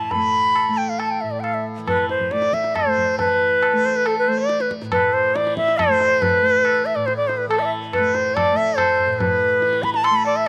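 In a straight 7/4 at 139 BPM that gradually speeds up, this meditative, solemn Hindustani classical fragment in raga darbari on A sets a bright, reedy bansuri melody, close-miked and up front with vibrato, tongued phrasing and a slapback echo, over a softly plucked, buzzing, shimmering tanpura drone and a high-tuned, ringing, band-limited tabla with its own slapback echo, all captured dry outdoors, with the music moving into a new section at 3.2 seconds.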